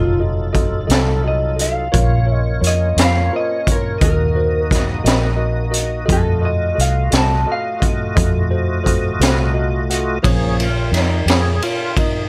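Mournful and smoky, this slow blues in 12/8 at 58 BPM sits in Bb minor, with a slightly broken-up, compressed electric guitar carrying the picked melody until 7.8 seconds over a worn, slightly out-of-tune tine electric piano and a round, foam-muted fingered bass that sits dark and up front. A lightly overdriven tonewheel organ holds sustained chords with chorus vibrato, key click and a slow rotary speaker, then takes a solo from 10.2 seconds, while a raw garage drum kit with a high-tuned snare, punchy kick, hi-hat and ride sounds gritty and saturated from a small room. The sound is dry and close, moving through F7b9, Bbm and Ebm in this short cut from a longer piece.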